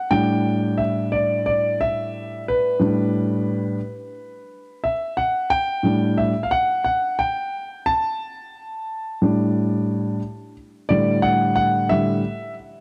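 A dark, warm production with light reverb and a small-room ambience frames this short cut from a longer hip hop piece, setting a nocturnal, smoky mood. A lone grand piano carries everything, sitting up front with a mellow, intimate, vintage tone and audible action noise that brings the listener close to the instrument. The tempo sits at 89 BPM in 4/4, with a 16th-note swing of 59% giving the feel a relaxed lean. The piano ranges from A2 to A5 and opens on an A7sus4 chord at 0.1 seconds. The playing stays smooth throughout, with a new section arriving at 10.9 seconds before the piano stops at 12.5 seconds.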